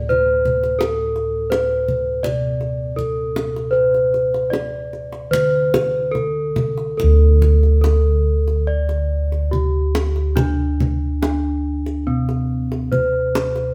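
A live room recording with light reverb captures a ceremonial, shimmering stretch of Javanese gamelan in D slendro, moving at 70-86 BPM in a straight 4/4 and cut from a longer piece. Up front, a bronze metallophone struck with a wooden mallet carries the ringing melody, while close-miked bossed gongs give a round, dry, beating bass that is full and bronze in tone. The kendang adds tight acoustic percussion from 0.1 seconds, and the music shifts into a new section at 7.0 seconds.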